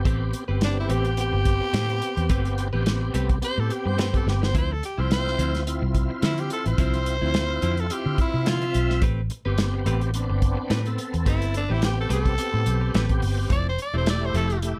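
An overdriven tonewheel organ, thick with key click and a slow rotary speaker, opens alongside a round, foam-muted vintage fingered bass in this mournful straight-eighth soul blues at 107 BPM in A minor, soon joined by a dark, tight small-room drum kit with a fill at 4.3 seconds, bright compressed stabs from a clean direct electric guitar in the background, and a raspy, growling tenor saxophone carrying the soulful lead over Am9, Dm9 and Fmaj7 chords in light reverb.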